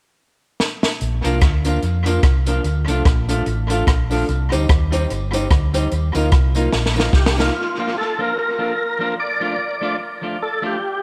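A drum fill on a compact cocktail kit with a high-tuned snare, punchy kick and tape echo opens this bouncy, joyful ska piece in Bb major at 147 BPM with a swung feel, joined at 1.0 seconds by a round, amped fingered bass and then twangy clean electric guitar, woody stabs from a dark upright piano and a jingly tambourine in the background, before the drums, bass, piano and tambourine drop away at 7.5 seconds, leaving the guitar beneath an up-front, lightly overdriven tonewheel organ melody with slow rotary and chorus vibrato, the whole set inside a moderate echo chamber reverb.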